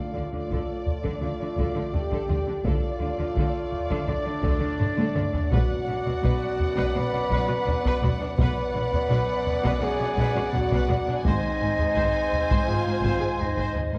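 Epic cinematic orchestral film score with a heroic, dark mood, where a lush bowed violin section carries the melody over a pure, crisp-toned concert flute and a background second violin section whose dark, expressive playing uses portamento. Mellow French horns, bright trombones and shadowy trumpet stabs sit beneath, while focused violas fill the middle and smooth cellos and woody double basses anchor the low end. A brief timpani hit opens the passage, heavy-stick taiko drives the rhythm with a fill around 4.8 seconds, and a scoring stage reverb blends with worn, warbling old-tape pitch drift across this fragment of a longer piece.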